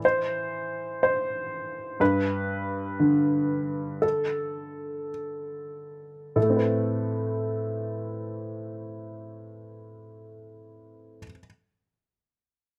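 A clear, woody upright piano plays alone in this fragile, melancholic classical excerpt in A minor, its intimate, up-front sound catching the audible noise of its action under light reverb. In a rubato 6/8 at roughly 47-62 BPM (dotted quarters), the accompaniment moves from a rootless A minor to G add9 and slows from 1.0 to 6.4 seconds, where a new passage opens on A minor add9. The piano stops at 11.4 seconds.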